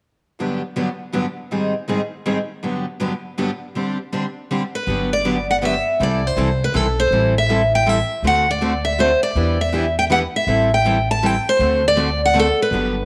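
A roomy echo-chamber studio ambience surrounds this playful, swinging jazz manouche excerpt in 3/4, where two bright picked steel-string acoustic guitars play accompaniment from 0.4 seconds, one boxy parlour guitar sitting in the background, before a picked steel-string lead guitar with slapback echo takes the melody at 4.8 seconds and a woody, thumpy pizzicato upright bass with dark gut strings joins at 4.9 seconds.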